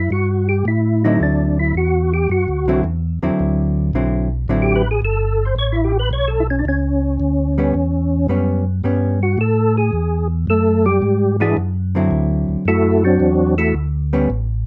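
Soulful and swinging, this jazz excerpt moves at 110 BPM in 4/4 with a strong swing feel, as a percussive tonewheel organ carries the melody through a slow rotary speaker and chorus vibrato, its tone round and clicking with third-harmonic percussion. A mellow organ bass, also turning through a slow rotary speaker, holds down the low end from the start, while a clean, picked hollow-body jazz guitar joins at 1.0 seconds with dark, up-front accompaniment over dominant ninth chords. Light reverb and a dark, warm production give the trio an intimate, smoky glow.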